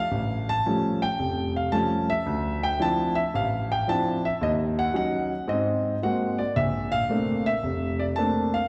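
A warm grand piano opens this short solo jazz passage, cut from a longer piece, with an Aaug7 chord sounding at the very start. The mood is playful and sophisticated, carried by a swung eighth-note feel in four. Across its 8.7 seconds the harmony moves through Dm9, Ebm7 and Ab9 before settling on Bbmaj9, a rich run of extended chords. The piano sits up front and spans a broad range, from a deep E#1 in the bass to A5 above. Around it, a concert hall reverb lends a lingering, spacious bloom, the sound of a large church or hall.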